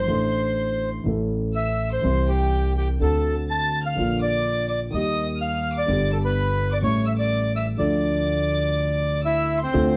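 Sultry and melancholic, this tango clip in D minor moves at 124 BPM in 4/4 with a rubato feel, cut from a longer piece. A reedy, vintage bandoneon carries the melody up front, its band-limited tone giving the line a dusky, old-record character. Above it, a studio violin section floats a soft-attacked, bowed second line played sul tasto, pure and close, sitting quieter than the lead. A mellow concert grand piano with deep bass and short sustain supplies the accompaniment, while a woody pizzicato upright bass anchors the low end. The harmony wanders from Asus4 through C, D7, Bb and Eb before A7 resolves to Dm near 7.8 seconds, all wrapped in a moderate large-studio reverb and a dark, warm production.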